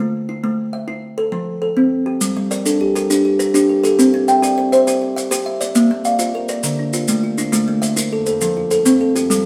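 Hypnotic and trance-like, this short cut from a longer piece moves in a Southern African traditional style, built on an mbira-style interlocking cycle in G dorian at 135 BPM in a straight 12/8. A kalimba opens alone with up-front arpeggios spanning D3 to G5, its woody, hollow-box thumb plucks short and airy. At 2.2 seconds grainy, mellow maracas slip in quietly, and a second kalimba joins at 2.4 seconds with ringing arpeggios from D3 to E5, sitting a little lower in the mix than the first. The harmony moves from A5 and F through Gm, C, Bb, Dm, Am and F. The players sound live together in a moderate stone room, whose 1.2-second reverb gives the plucked tones a gentle halo.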